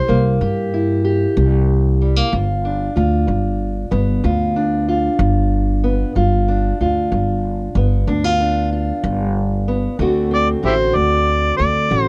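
Gritty and laid-back, this excerpt of acoustic country blues moves at an unhurried 63 BPM in a straight 12/8, set in G mixolydian. A fingerpicked steel-string parlour guitar carries the accompaniment throughout, its tone dark and boxy, while an upright bass played pizzicato on gut strings adds a woody, thumpy low end from 0.1 seconds. An amplified, overdriven harmonica takes the melody, sounding briefly at the very start and then returning as an up-front solo at 10.3 seconds, with light vibrato, tongue slaps, scooped notes and a soft attack in a jazz-inflected style. The chords shift from C7 to G7 and then D7 near the end. All three parts sit up front in a dry, close, 1970s-style studio sound touched by light reverb.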